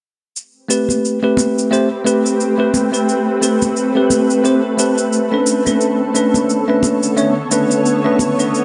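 A lush hall reverb with a softened top end surrounds this smooth, warm sunset chillout excerpt with a swung sixteenth-note feel. An overdriven electronic shaker starts at 0.4 s and is soon joined by a clean, bell-like tine electric piano with delay sitting up front and by acoustic congas. A shimmering, ethereal ambient pad with chorus enters at 1.6 s to hold detuned, slow-attack, evolving chords, and the harmony moves from Am9 to Bm9 at 5.5 s.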